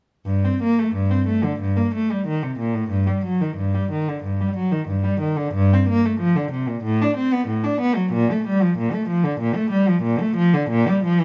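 A rich, bowed solo cello, played by one player up front with vibrato, soft attacks and expressive portamento, carries this flowing, grave baroque-style suite movement in a free rubato feel from 0.3 to 11.2 seconds, heard in a moderate stone room reverb in a short cut from a longer piece.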